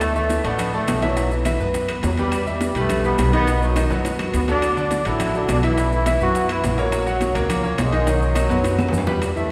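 A driving, passionate salsa groove at 209 BPM opens with a clear, vintage trombone section carrying the melody over a dark, thumpy pizzicato upright bass up front, while bright high-tuned congas, ringing saturated timbales, round low-tuned bongos, woody claves and grainy maracas fill out the percussion. A brilliant, worn concert grand piano joins at 0.2 seconds with intimate, audible action noise and long sustain, accompanying through chords such as Dsus2, Em and F#/A# before settling on B. Drum fills arrive around 3.8 and 8.4 seconds, and the whole excerpt sits in the reverberant wash of a concert hall.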